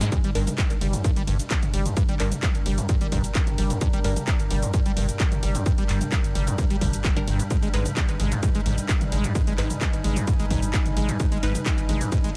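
A digital ambience frames this relentless, hypnotic slice of driving peak-time techno, where an overdriven, up-front kick sits atop a thick, saturated sub bass and a punchy, tape-warm analog drum machine of handclaps, hi-hat, ride, shaker, snare and toms, with a short room sound on the snare, clap and hats. A squelchy, resonant sawtooth acid bass riff runs throughout with chorus, delay and sidechain pumping, while a swarming, granular drone and a deep, moody ambient pad breathe in the background. Crisp, wave-folded chord stabs with delay flicker in from 0.4 to 4.2 seconds and again from 7.2 seconds, as the harmony shifts from G minor to Ab minor at 7.5 seconds.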